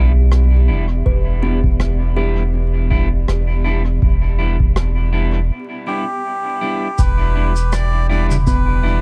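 Deep and spacious, this ambient dub excerpt moves at 81 BPM in 4/4 with a lightly swung sixteenth feel, sitting on an Em7 chord in E minor. A round, soft sub bass sits up front from the start, joined by dark, clean picked electric guitar stabs trailing dub echo and a cloudy, blurred granular pad of sustained chords that drops out at 5.5 seconds. Jazz brushes on rim click, shaker and toms, also sent through dub echo, enter just after the opening. At 1.1 seconds a tape-warm electronic kick comes in deep in the background, alongside woody, hollow kalimba arpeggios with tape echo. During a break, a reedy, nasal melodica melody arrives at 5.9 seconds, close-miked and breathy with its own tape echo. The production is dark, with a small room reverb and a bed of vinyl crackle.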